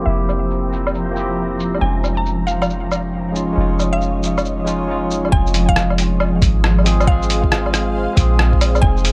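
A barky, amp-colored tine electric piano with dub echo, a blurred granular cloud pad under a filter sweep until 5.3 seconds, and a deep, round 808-style bass pump together from the outset of this ghostly, melancholic future garage excerpt in F minor at 137 BPM with swung 16ths, joined by a woody FM mallet pluck melody through chorus, cassette tape and dub echo and by a muffled, small-room lo-fi sampler kit of hi-hat, rim click, shaker and woodblock, before a soft, tape-colored electronic kick arrives at 5.3 seconds as the harmony settles on F minor inside an echo-heavy, low-pass filtered mix with light reverb.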